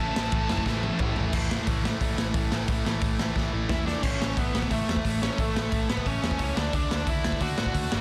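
A raw garage drum kit sits up front in this rowdy, upbeat punk rock excerpt, its punchy kick, medium-tuned snare, crash, ride, hi-hat and toms sounding saturated and gritty with a rolled-off top in a small, pumping room, and it enters at 0.2 seconds. At a straight 178 BPM in 4/4, the tune starts in A major and moves to A mixolydian from 4.0 seconds, with drum fills leading into each new section. A picked, overdriven electric guitar plays a bright riff throughout, joined by a sludgy, overdriven riff guitar until 4.0 seconds and, at the very start, a double-tracked, high-gain guitar with a heavy, distorted edge. Underneath, a picked electric bass sounds amped and growly, sitting in the background with the riff guitars. A smooth, overdriven lead guitar with delay flashes a brief melody at the opening and returns at 3.7 seconds to carry the tune over chords of A and D. The whole mix has light reverb and a dense, heavily limited modern master.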